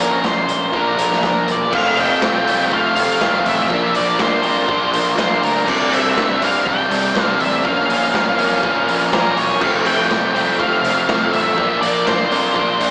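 This indie rock excerpt opens with a dark, fuzzy octave-fuzz lead guitar carrying the melody between Bb4 and G5, its distortion trailed by a slapback echo. Beneath it, an up-front, crunchy overdriven guitar plays a riff. A compressed, overdriven electric guitar sits further back with a lush chorus, and a round, fuzz-driven picked bass holds down the low end. A raw garage drum kit joins at 0.2 seconds with a boomy kick, a medium-tuned snare, hi-hat and dark crash cymbals, all gritty and saturated, with a pumping small-room sound and a rolled-off top. The mood is carefree and jangly at a straight 122 BPM in 4/4 and F major, moving from a brief opening on Bbmadd9 and Bb into a longer passage from 1.7 seconds that cycles through F, Bbadd9, Csus2 and Bbm. The sound has little reverb, like a live gig heard through the venue's PA on a small speaker, with a hint of recital hall reverb.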